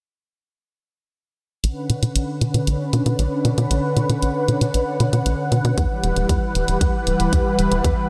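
Soaked in a lush hall reverb, this dreamy, driving and cinematic synthwave fragment in B minor at 116 BPM brings in a silky, detuned analog string pad with ensemble chorus and sidechain pumping, a tight, dark sequencer bass with tube saturation, and a produced electronic hi-hat together at 1.6 s, both synths carrying filter sweeps over a Bmadd9 chord, before a punchy, layered electronic kick drum joins at 5.8 s as the harmony moves to Emadd9.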